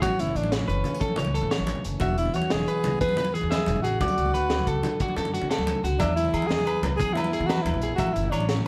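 A moderately roomy studio sound frames this sunny highlife guitar band excerpt in a straight 12/8, its chords moving from A through E and D and back. Up front, a breathy, close-miked alto saxophone carries the melody with vibrato, scooped notes and plate reverb, while a slightly broken-up electric guitar spins compressed arpeggios through tape echo and a full-bodied fingerpicked dreadnought, complete with finger squeak, sits in the background. A woody, growly pizzicato upright bass and a gritty, saturated breakbeat kit with a punchy kick and high-tuned snare anchor the groove, bright hard-handed congas patter underneath, and ringing agogo bells join at 6.0 seconds.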